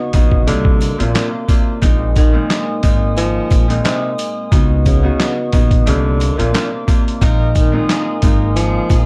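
A gritty, pitched-down boom-bap drum kit with a thumpy kick, medium-tuned snare, handclaps and hi-hat sits up front in this moody, dark hip-hop excerpt, joined by woody pizzicato upright bass, a ringing fingerpicked Celtic harp, a deep detuned analog pad with chorus, faint distant sleigh bells and a breathy, whispered tenor saxophone melody with vibrato and scooped notes, while a roomy horn section adds tape-echoed stabs in the background from 7.2 seconds over sus4 chords in a dark, lightly reverberant mix.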